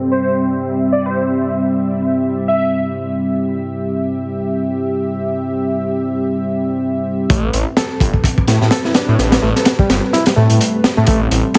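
A thick, swirling detuned saw bass sits up front once the drop arrives at 7.3 seconds, its phaser giving it a restless churn beneath this energetic, swaggering breakbeat cut from a longer piece, running at 127 BPM in A minor with a 16th-note swing. Before that, a deep, moody analog pad carries a rootless Am7 through a filter sweep, its slow-attack chords thickened by chorus and pumped by sidechain. An airy, dreamy lead floats over the opening until 2.7 seconds, soft and mellow with vibrato, an old-record sound and dub echo. At the drop the harmony shifts to Am9, and a crunchy, punchy breakbeat kit enters alongside the bass, with a high-tuned snare, hi-hat and kick sounding gritty and saturated, its top rolled off. A barky, reedy electric piano riff joins at the same moment, lightly overdriven with fast tremolo, tube saturation, 12-bit sampler grit and dub echo. The whole mix is heavily compressed and low-pass filtered like a radio broadcast, set in a small room with a moderate plate reverb.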